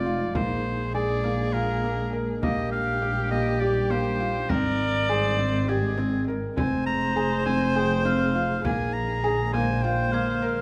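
A clear, close-miked oboe carries the melody with vibrato in a classical style, shadowed by a reedy, distant viola bowed with light vibrato and a gut-string, period tone. This pensive, hypnotic piece of contemporary chamber music moves in 7/8 at 203 BPM counted in eighths, with a straight feel, and is cut from a longer work. Beneath them, a felt-muted upright piano plays intimate arpeggios with audible action noise, while a bowed double bass sits up front with a dark, expressive sound, vibrato and portamento. In the background, an ethereal, airy pad holds sustained chords with a slow attack, long release, ensemble chorus and its own reverb, moving from Bb7 through Ebmaj9/Bb, Abmaj7 and Fm7 back to Bb7. A very quiet, deep frame drum played with hard hands enters at 0.4 seconds, and a bell-like glockenspiel with soft plastic mallets rings briefly at the start and returns at 4.5 seconds, the ensemble set in a moderate recital hall reverb.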